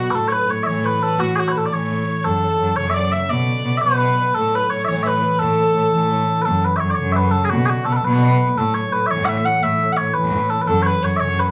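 A bright, lively Celtic jig in 6/8 opens with the full quartet at once: small bagpipes carry the melody up front with a sweet, continuous tone, a dark, woody bowed fiddle plays a close second line alongside them, concert harp adds ringing, thumb-plucked accompaniment, and a rich, nasal cello holds the bass, also up front. The harmony moves through A, F#m, Bm and back to A, and the same section is played twice, with the repeat beginning at 6.5 seconds. The fiddle drops out at 6.1 seconds, leaving pipes, harp and cello, then returns at 10.7 seconds as the chords turn to F#m again. Fiddle and cello each carry a light vibrato, and the cello has an intense, boxy edge. The band sounds as though it is playing live in one room, bathed in a wet studio reverb, and the passage is cut from a longer piece.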